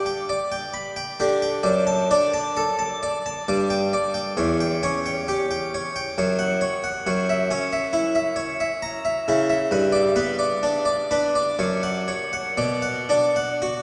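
Radiant and dance-like, this is a short cut from a longer baroque-style suite movement for solo harpsichord, running 13.8 seconds. It moves in 3/4 at roughly 58-69 BPM, played with a rubato feel that lets the phrases breathe. The harpsichord is close-miked and up front, with a full, brilliant, plucked French-style tone and the added shimmer of octave strings, ranging from E2 up to B5. The harmony opens on G, moves through D/F# and a diminished colour, leans on F#7, returns briefly to G, and settles on B minor. The instrument sits in a vast, echoing cathedral space whose long reverb tail blooms around each note, and the sound stays soft at the very top.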